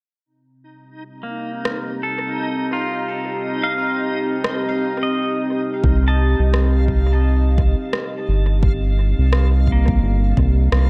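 A reversed, dreamy swelling texture opens this meditative, spacious ambient dub excerpt at 1.0 seconds, soon joined by a deep, moody pad holding sustained Cm7 chords with chorus and reverb, twangy pedal steel guitar arpeggios under a filter sweep and dub echo, and a tape-toned electronic rim click echoing in a large room, before a round, up-front analog bass and a deep electronic kick in the background arrive at 5.8 seconds to ground the swung 86 BPM groove in C dorian.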